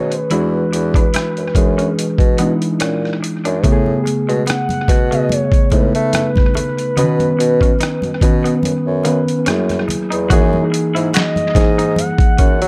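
R&B with a neo-soul lean, this smooth, relaxed passage cut from a longer piece moves at 72 BPM in 4/4 with a gentle 16th-note swing. A gritty, pitched-down boom bap drum kit sits up front with a thumpy kick, medium-tuned snare, hi-hat, rim clicks and finger snaps, while a reedy electric piano, mellow and clean through its built-in speakers, carries the chords with tape echo from E9 through Amaj9, Badd9 and F#9 to a closing F#13. Beneath it, a bassoon supplies the bass line with a soft attack and classical-style vibrato. The melody comes from a sustained, gliding lead blending triangle and sine tones, its portamento and vibrato dressed in chorus, phaser and tape echo. Tucked in the background, a slightly broken-up, twangy picked electric guitar through a small old amp adds a lo-fi second line, and thick-skinned congas recorded in a live room enter at 3.6 seconds. The overall mix is echo-heavy with light reverb, shifting into a new section at 10.3 seconds.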